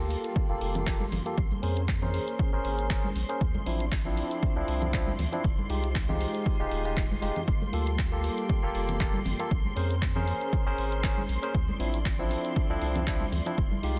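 Moody and hypnotic, this deep house excerpt rides on an up-front, overdriven electronic kick and a punchy analog drum machine's handclaps and hi-hat, with soft-handed congas set back in the mix, while a round, deep analog bass and bright, barky tine electric piano stabs pump against the kick, the piano carrying delay and a filter sweep over the full 14 seconds, above a silky string machine sustaining minor-ninth chords from Gm9 through Bbm9, Dm9 and Fm9, textured by an evolving chorused analog string pad and a distant, reedy chamber string section.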